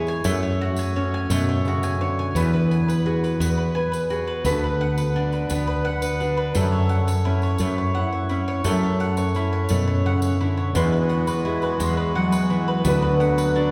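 A slow, straight 6/8 lilt carries this wistful, haunting acoustic folk passage, cut from a longer piece, in which a full-bodied fingerpicked steel-string guitar and a bowl-back mandolin spinning double-string arpeggios share the accompaniment. A woody, growly fretless electric bass sits up front and punchy, while a jingly tambourine stays low in the mix. At 10.7 seconds a reedy, sweet accordion with light tremolo tuning enters with smooth sustained chords, all of it bathed in the lingering wash of a church reverb.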